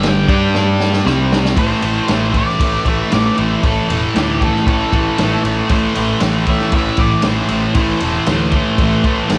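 A straight 4/4 garage rock groove drives this raw, menacing cut from a longer piece, with a thick, bright, double-tracked fuzz guitar riff up front, a growling overdriven picked bass, a vintage drum kit of punchy kick, medium-tuned snare and dark ride cymbal that fills from 0.6 to 1.6 seconds, and a dark octave-fuzz lead guitar melody tucked in the background with tape echo, all captured as a home cassette recording with light reverb and studio ambience.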